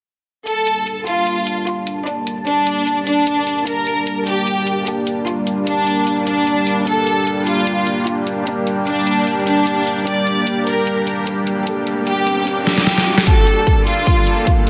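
Aggressive and chaotic, this excerpt of heavy wobble dubstep in G minor at 150 BPM, with a half-time, swung feel, sets a smooth bowed violin section carrying the melody through tape echo over a lush, detuned supersaw pad on a sustained Gmadd9 that pumps under a low-pass filter sweep, while a dubstep kit of deep snare and metallic hats drives ahead, a drum fill at 12.7 seconds opens a build-up where a punchy electronic kick enters at 13.3 seconds, a very quiet riser climbs in from 11.1 seconds, and a hall reverb and dense, heavily limited master frame it all.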